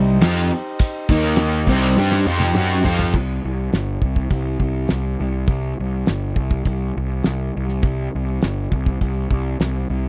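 An overdriven, double-tracked semi-hollow guitar leads this dark, mysterious stretch of psychedelic rock, picking a riff coloured by harmonic tremolo over Cm and Eb5 chords in C minor at 102 BPM in a straight 4/4. Beneath it, a reedy pedal harmonium breathes mellow, smooth sustained chords from further back in the mix. The drums sound thuddy and tight, with a fat snare, dark cymbals and a rolled-off top, and a drum fill runs from 2.0 to 3.1 seconds. At that point the guitar and harmonium stop and the harmony falls away, leaving the fuzz-heavy picked electric bass and the cloth-damped kit to carry on together. The recording is dry and close, with a 1970s studio character, and it keeps the guitar, bass and drums up front.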